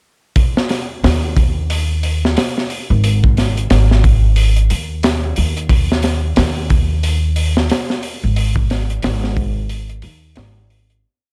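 A crunchy, gritty looped breakbeat with edits, its high-tuned snare and tight kick saturated and rolled-off on top, opens this dark, cinematic trip hop piece at 90 BPM with a 16th-note swing at 0.4 seconds, joined at 1.0 seconds by a woody, thumpy pizzicato upright bass playing a dub-style line, both up front in a dry, shadowy mix that fades out from 7.5 seconds.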